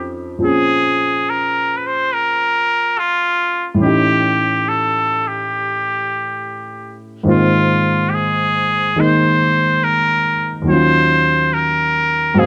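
A smoky, melancholic jazz ballad at 71 BPM with a lazy swing, this 12.5-second fragment of a longer piece features a bright, nasal, vintage-toned trumpet with a straight mute carrying the solo melody, while a warm, natural baby grand piano with short sustain accompanies through chords such as Bbm9, A7#11, Ab69 and Ebm9, both sitting up front in a dark production with light reverb.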